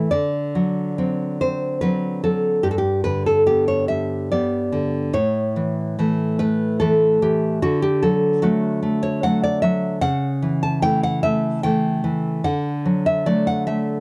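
The recording sits in a booth with a short, moderate ambience and a dark, warm production, and a single nylon-string guitar is placed up front. This fragment of a longer romantic piece for solo classical guitar has a nostalgic, warm mood, moving in a gentle three-beat metre with a flexible, rubato feel. The guitar is fingerpicked and full-bodied, with a deep classical tone ranging from G2 up to A5, and finger squeak is audible along the strings. The harmony begins on D7 and passes through G and A before settling on D at 7.6 seconds, then moves through A/C# and returns to D at 12.4 seconds. The guitar plays alone throughout its 14-second span, giving the passage a tender, reflective character.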